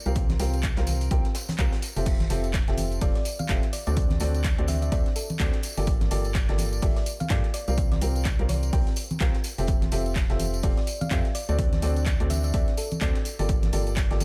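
A clear, woody upright piano, worn and slightly detuned, carries the riff through this euphoric, uplifting piano house excerpt, pumping under the sidechain and trailed by analog delay. Beneath it, a hollow, organ-like FM bass with a dark, percussive attack is thickened by tube saturation and breathes with the same pumping, while an up-front, tape-warm electronic kick drives the swung groove. A punchy analog drum machine adds crash cymbal, handclaps and hi-hat, joined by acoustic tambourine and congas and a very quiet, gritty breakbeat kit whose high-tuned snare and hi-hat sit dark and rolled-off in the background. From 3.0 s a round, tine-like synth pluck, gentle and thumb-piano-like with a noise layer and long release, threads a melody through chorus and analog delay until 13.3 s. The harmony cycles through sus, ninth and dominant seventh chords, all set in a small room ambience.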